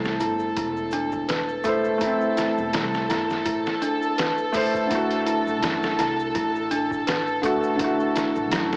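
A felt-muted upright piano sits up front in this dark, hypnotic trip hop excerpt, its soft, mellow accompaniment carrying audible action noise through harmonic tremolo and tape echo. Beside it, a worn celesta spins delicate, bell-like arpeggios that sound slightly out of tune, also trailing tape echo, while a symphonic violin section holds floating sul tasto chords roughened by vintage 12-bit sampler grit. At 83 BPM with a gentle swing on the sixteenths, a compressed, pitched-down sampler-style drum kit enters at 0.1 seconds with a thumpy kick, medium-tuned snare and hi-hat, and a woody, growly pizzicato upright bass runs underneath through tube saturation. A tube shaker with group handclap stays in the background, and a very quiet, flickering granular texture hovers on a detuned, slow-attack sustain. The harmony moves from Am to D at 4.9 seconds, and the whole mix carries vinyl crackle, a small-speaker tone and light small-room reverb.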